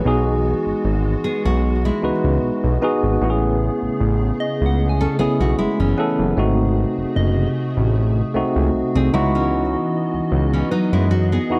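Contemporary R&B with a moody, longing feel and a gentle swing, this short excerpt moves through Emaj7, Amaj9, G#7b9 and C#m11 under light reverb and a dark, warm production. Up front, a clean tine electric piano played through its built-in speakers carries the accompaniment, joined at 0.1 seconds by a fat analog bass whose thick, detuned sawtooth tone has a filter sweep, a fast attack and a decaying body. A full-bodied nylon-string guitar fingerpicks arpeggios with a deep classical character, its notes trailed by digital delay. Beneath them, a hollow, flute-like pad holds sustained chords with a slow attack and long release, its vintage, warbling sound shaped by ensemble chorus and a moving notch. In the background, a soft, pure FM synth bell adds gentle texture, colored by chorus, phaser and digital delay.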